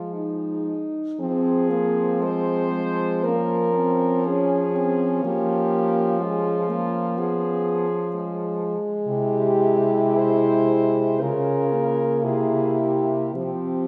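A horn quartet opens together at 0.0 seconds in this solemn, melancholic classical fragment, cut from a longer work and moving at a slow, rubato 51-65 BPM in 4/4 and F minor. The top horn carries the lyrical melody with a mellow, soft-attacked tone that sounds distant. Beneath it, a second horn plays an inner line with a warm tone and a smooth top, while a close-miked accompaniment horn fills the middle register. The bass horn sits up front, coloured by light vibrato. The harmony passes from F minor through B-flat minor over F to C, then B-flat minor over D-flat, back to C, and settles on a bare F fifth at 13.3 seconds, all carried by the wet bloom of a recital hall.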